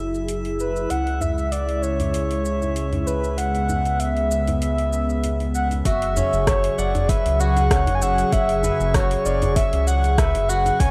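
Earthy and mystical, this organic downtempo excerpt moves at 97 BPM with a light 16th-note swing, as an airy pad on F#9sus4 and C#m7 chords and a round analog bass pump together under a filter sweep on the pad, while a faint glassy texture of drifting overtones floats above. A deep house kit of hi-hat, rim click and shaker, a soft-handed djembe in the background and an up-front, flute-like synth lead with vibrato, tremolo and tape echo soon join in. At 5.9 seconds the harmony settles on F#5, as a silvery fingerpicked steel-string zither adds ringing arpeggios and a deep, tape-warm electronic kick enters, all inside a lush hall reverb and a rough home-demo mix.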